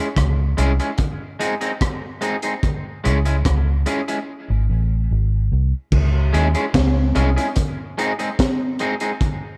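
A straight 4/4 groove at 73 BPM, played on a crunchy, gritty breakbeat kit with a tight kick, high-tuned snare, rim clicks, hi-hat and dark cymbals, drives this deep, meditative dub reggae cut in C# harmonic minor, moving between C#m and G#. A round, punchy foam-muted electric bass sits up front beneath a twangy, slightly broken-up picked electric guitar soaked in tape echo. The drums drop out from 4.3 to 5.9 seconds before returning for the closing section, all within an echo-heavy mix with light reverb and studio ambience.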